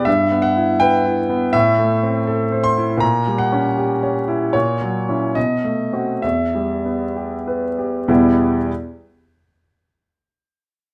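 A clear, intimate concert grand piano plays alone in this stormy, brooding Romantic character piece, cut from a longer work, its deep bass and audible action noise placed up front in a light reverb. The rubato phrasing moves through Em/G, Am, A#dim7 and F#7/A# to a B7b9 that resolves to Em at 6.2 seconds, with the pace slowing from 3.8 to 8.1 seconds. The piano stops at 8.7 seconds, just after a new section begins.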